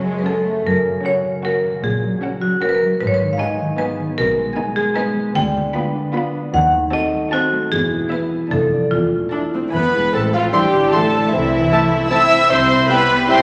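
A playful, whimsical film cue in 3/4 at 152 BPM opens with the full string body and concert harp together: a soft violin section carries the melody in the background over a dark second violin line, a viola section supplying sul tasto accompaniment, thumb-plucked ringing harp arpeggios and a woody cello bass, joined at 0.2 seconds by an up-front marimba with hard mallets sharing the tune and a rich double bass section at 0.7 seconds. The mischievous, sneaky mood shifts from F# major to A minor at 5.4 seconds, and as the marimba finishes near 9.9 seconds a very quiet clarinet, a mellow bassoon, a crisp flute group, a smooth oboe and a tight French horn section holding sustained chords fill in the closing passage. A wet scoring stage reverb surrounds the intimate, close strings, and the cut stops on a C chord at 13.4 seconds.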